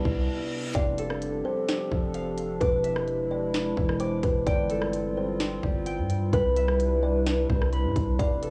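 A warbling, nostalgic pad of dark sustained chords and a quick reverse cymbal open this floating, blissful slice of atmospheric cloud-rap, with the pad pumping under sidechain and smeared by chorus and cassette-tape wear. At 0.1 seconds a long, deep 808-style bass and an up-front trap kit with a hard-clipped kick, sharp snare, crisp hats and rim clicks settle into a half-time feel at 129 BPM. From 0.7 seconds a woody, hollow kalimba carries the melody, joined by mellow fingerpicked concert harp arpeggios, both muffled by a low-pass filter and trailed by analog delay over a C major progression moving from Cmaj7 through F69, E7 and G9sus4.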